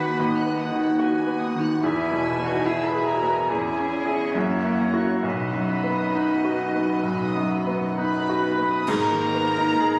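A clear, intimate baby grand piano leads this passionate, lyrical romantic movement for piano and orchestra, carrying the melody up front with audible action noise and long sustain while the tempo bends freely in rubato. Behind it, a chamber violin section shares the melody high above in soft, sul tasto tones with light vibrato, and a second violin line, an airy, distant silver flute and a very quiet, dark viola section fill out the middle. A mellow French horn section holds sustained chords, a clear trumpet section adds tight stabs, and shadowy cellos with background double basses anchor the bass, the brass dropping away at 8.5 s. Cymbal swells, clash cymbals and concert bass drum enter faintly at 5.2 s with bright cymbals, a warm solo oboe joins with a smooth second line at 8.0 s, and the ensemble lands a brief accent near the close of this fragment of a longer piece. The sound is wet and reverberant, heard as if captured on a phone in a club-like room.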